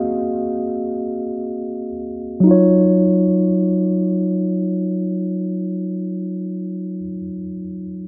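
A moderate concert-hall reverb and a low-pass filter give this short R&B fragment a soft, rounded sheen, with a filter sweep colouring the opening 2.4 seconds. A lone, mellow tine electric piano sits up front, clean and heard through its built-in speakers, moving from Ab7 to a lingering Ebm9 at 2.4 seconds. The mood is longing and moody, like a passage lifted from a longer piece.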